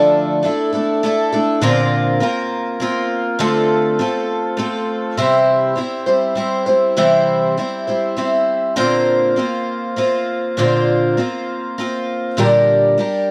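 A straight 3/4 pulse at 100 BPM carries this reflective, wistful rock passage, cut from a longer piece, played entirely by a solo picked twelve-string acoustic guitar whose shimmering, octave-doubled strings sit up front across a range from Bb2 to C5, with a touch of finger squeak. The harmony moves from Dmadd9 through Bbadd9 and Dm7, then shifts at 5.2 seconds to C, Bbadd9 and a closing Gm/Bb. Light reverb tints an otherwise dry, close 1970s-style studio sound.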